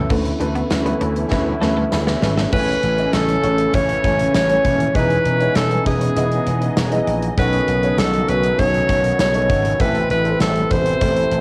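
This short cut from a longer 1980s-style pop piece has the hazy, homespun sound of a cassette home recording made in a wet booth, and its mood is romantic and nostalgic. Up front, a bright alto saxophone carries the melody in a smooth pop style with scooped notes. Behind it, a warm baby grand piano treated with tape and plate reverb plays accompaniment beneath an evolving, airy pad of detuned sawtooth chords with chorus. A polished gated drum kit with a punchy kick and a medium-tuned snare plays a straight groove alongside an amped vintage slap bass, with a very quiet, jingly tambourine on top. A clean, twangy twelve-string electric guitar riff opens the piece and stops at 2.5 seconds, as a drum fill ends, when fat, brassy analog synth stabs come in in the background. The chords move from Aadd9/D through Amaj7, Emaj7 and B9 before arriving on Amadd9.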